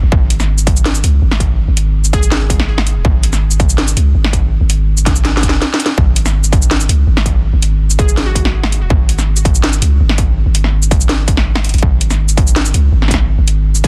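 A dense, heavily limited and dry-sounding mix opens this tense, spacious half-time drum and bass excerpt, where a deep, mellow 808-style sine bass and a distorted, tape-warm electronic kick sit up front beneath a layered kit of cracking snare, metallic hats and shaker with a drum fill at 5.2 seconds, while a glassy, detuned wavetable pluck with chorus and digital delay flickers in the background in brief bursts starting at 2.1 seconds.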